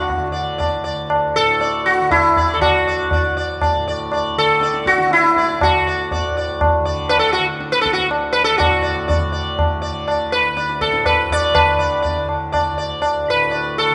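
Meditative and serene, this Hindustani classical excerpt in raga bhupali sets an up-front, buzzing sitar melody with shimmering sympathetic strings over a mellow, softly plucked tanpura drone and low-tuned, ringing tabla, all bathed in the lush reverb of a recital hall as the pace gradually quickens and the music moves into a new section at 8.6 seconds.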